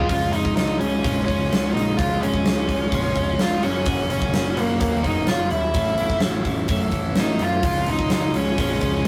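A straight 4/4 pulse at 127 BPM drives this restless, bittersweet quiet-loud alternative rock excerpt in Db major, where a huge arena drum kit with a fat snare and punchy kick sits up front beside a dark octave-fuzz lead guitar melody, while a raw, bright overdriven garage guitar riff plays along, and a twangy phaser-washed twelve-string electric guitar playing arpeggios and a growling, round overdriven bass sit further back, the music moving through Db, Gb and A before returning to Db at 7.6 seconds in a rough rehearsal-room sound with moderate reverb.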